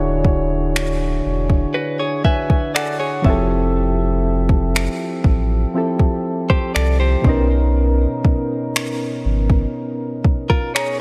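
A slow, straight 4/4 pulse at 60 BPM comes from a smooth, produced R&B drum kit of finger snaps and a soft, overdriven kick sitting up front, while a deep, round sine sub bass holds down the low end until 9.7 s in this dreamy, smooth contemporary R&B excerpt. Soft, full-bodied electric-piano-like synth keys with chorus and a dark filter sweep carry the harmony through Dmaj9, Fmaj9 and Bmaj9, adding a fill from 1.7 to 3.7 s just as a clean, direct-recorded electric guitar enters with picked, compressed arpeggios through digital delay. Light reverb and digital ambience give the smooth mix a gentle sense of space.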